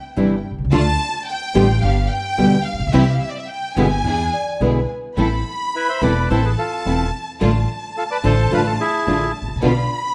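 Dramatic and passionate, this rubato tango excerpt sets a lush, vibrato-rich violin section over fingerpicked nylon-string guitar, a woody pizzicato upright bass up front and distant bowed stabs from a smooth string section, with a mellow soft-mallet vibraphone ringing briefly at 4.3 s before a reedy bandoneon takes the melody from 5.8 s, all heard through close, detailed microphones in a moderate recital-hall reverb.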